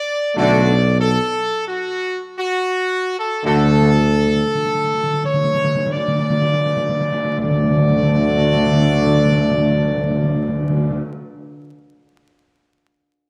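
A warm, smooth-topped trumpet section leads this regal, triumphant classical fanfare in D major, carrying the melody up front from the opening moment in a stately 3/4 that moves between 40 and 63 BPM and slows over its first 7.4 seconds. Beneath it, a mellow tuba with a soft attack anchors the bass, while trombone and French horn sections sit in the background holding sustained chords with light vibrato, the horns carrying a slightly vintage colour. Timpani with calf heads and medium mallets enter at 3.5 seconds, playing a fill with the ring of a live room, before the harmony settles onto a D major chord at 7.4 seconds. The close, detailed microphones catch the brass under light reverb, with vinyl crackle adding an aged sheen to this short cut from a longer piece.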